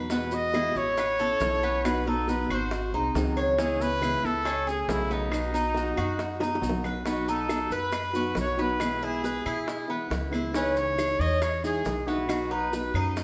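A wet stone room gives this live, one-room band a lingering echo as it plays a danceable Cuban son and guajira groove at 138 BPM, cut from a longer piece. Up front, a breathy, intimate trumpet carries the melody with soft attacks and vibrato. Behind it, a fingerpicked nylon-string guitar provides accompaniment while a picked Cuban tres with metallic double strings plays arpeggios, both over a thumpy, dark pizzicato upright bass with gut strings. Grainy maracas shake along, tight, high-tuned bongos and woody claves sit in the background, and the music moves into a new section at 7.1 seconds.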